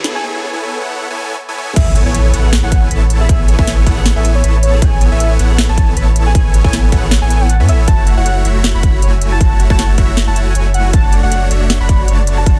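A half-time future bass groove at 157 BPM in 4/4 rolls with a light 16th-note swing, playful and lush in A major. It opens on a brief build-up, with a drum fill and a faint electronic riser over a break, before the drop lands at 1.8 seconds, where a punchy, layered electronic kick enters alongside a quiet impact. The trap kit's sharp snare, crisp hats and crash carry an overdriven grit from being re-recorded in a small room, while a deep, thick saturated sub bass sits up front with a fast attack. Huge, bright supersaw chords built from detuned sawtooth unison with a sub octave pump with sidechain compression, moving from Amaj9 to F#m7 at 7.9 seconds and on to Dmaj7/F#. A velvety, smooth synth lead carries the melody with chorus, vibrato and tape echo, and a fingerpicked Celtic harp rings softly in the background with its arpeggios trailing through tape echo. The mix is dry and dense, with a heavily limited modern master, in a passage cut from a longer piece.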